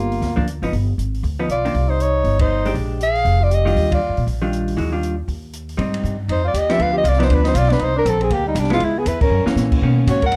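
Swinging in 4/4 at a brisk 238 BPM, this sophisticated small-group bop excerpt in Eb major sets a mellow, scooped soprano saxophone melody in plate reverb over a breathy, whispered alto saxophone second line, both falling silent briefly and returning at 6.3 seconds, while a woody pizzicato upright bass, a clean, compressed hollow-body jazz guitar and an open acoustic drum kit with a high-tuned snare and boomy kick carry on through band accents and a drum fill at 9.3 seconds, all within a dark, warm production.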